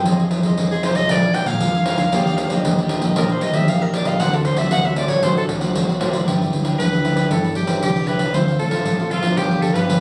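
A straight 4/4 groove at 116 BPM drives this playful, sunny excerpt of samba and choro, with a jingly pandeiro played with soft hands sitting up front despite its distant, large-room character, entering at 0.1 seconds. Beneath it, a dark, round fingered electric bass sounds direct and amped, while a fingerpicked nylon-string guitar with a full-bodied, deep classical tone stays in the background and a crisp, picked cavaquinho adds warm acoustic color. From 0.7 seconds a bright, close-miked soprano saxophone takes the lead in a jazz-style solo, its soft attack, scooped notes and vibrato sitting up front. The harmony moves through Fm7, Bb7 and Ebmaj7 to D7, then shifts at 6.3 seconds to a new section on G6 before passing through Dm7 and G7. The whole has the feel of a phone recording made in the room, with a moderate studio reverb and a club ambience around the players.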